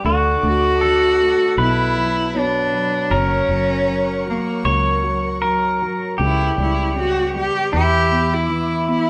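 In a straight, unhurried 4/4, this acoustic folk-pop ballad settles into an intimate, reflective mood, cut from a longer piece. A rich, focused solo cello carries the melody from 0.5 s, bowed with vibrato and placed up front. Beside it, a clean pedal steel guitar played with fingerpicks adds a compressed second line of slides and volume swells. A round, foam-muted fingered electric bass, direct and amped, anchors the low end beneath a dark, mellow grand piano with deep bass. In the background, a distant studio string section holds soft-attack chords with portamento and expressive vibrato, while a dry, close-miked vibraphone with medium hard mallets rings out metallic arpeggios until 6.5 s. The chords move from Dadd9 through Bm7 and F# to C#m7b5 and E5, with the band sounding live in one room under a wet reverb.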